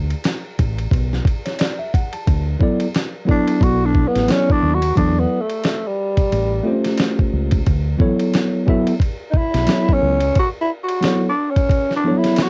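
The recording has a lo-fi home-cassette character, with vinyl crackle and a light reverb around a smooth, relaxed jazz-hop groove at 89 BPM in D major, swung on the sixteenths. A compressed, sampler-style drum kit sits up front, re-recorded in a small room with a thumpy kick, a medium-tuned snare, hi-hat and ride, all carrying a gritty tape tint. Beneath it, a deep, round fingered electric bass plays dark and punchy until it drops out at 10.3 seconds. A worn, slightly out-of-tune tine electric piano comes in at 1.5 seconds, clean and direct though also colored by cassette, moving through chords such as Dadd9, Bm7, Esus2, A7alt and a rootless Dmaj9. At 3.3 seconds a tenor saxophone takes the solo, breathy and raspy with subtone, vibrato, scooped notes, a soft attack and a mellow, growling jazz voice.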